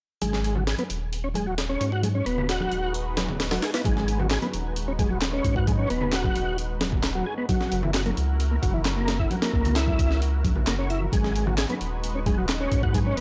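Breakbeat in G# minor at 132 BPM, raw and gritty on a dry cassette-tape sound, with a compressed, pitched-up sampler drum kit (thumpy kick, high-tuned snare) and a deep, saturated sub bass up front, a smooth tonewheel organ riff through fast rotary speaker, overdrive and tape echo, both bass and organ opening under a filter sweep, low-tuned congas ringing in the background, a lush detuned unison pad with sidechain pumping and 12-bit grit entering at 2.3 s, and layered overdriven handclaps arriving at 4.3 s, while the chords move from G#m7 to F#7 and back.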